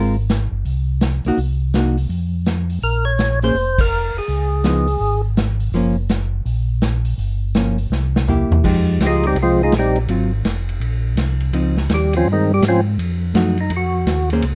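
Soul jazz organ trio in F minor, swinging at 165 BPM in 4/4 with a bluesy, smoky mood, heard as a short cut from a longer piece. A mellow tonewheel organ carries the bass line from the start, round and clean with chorus vibrato and a slow rotary speaker, while a hollow-body jazz guitar comps up front with a dark, picked electric tone. A vintage acoustic drum kit enters at 0.3 seconds, its punchy kick, medium-tuned snare and dusky cymbals sitting in a small, pumping room with a rolled-off top. A percussive tonewheel organ states the melody from 2.8 seconds, fat and lightly overdriven with third-harmonic percussion and its own slow rotary swirl, and the band hits an accent at 3.7 seconds. After a drum fill, that organ takes a solo from 8.6 seconds over chords moving from Fm9 through Ab13 and Dbmaj9 to F7b9. The production is dark and warm with light reverb.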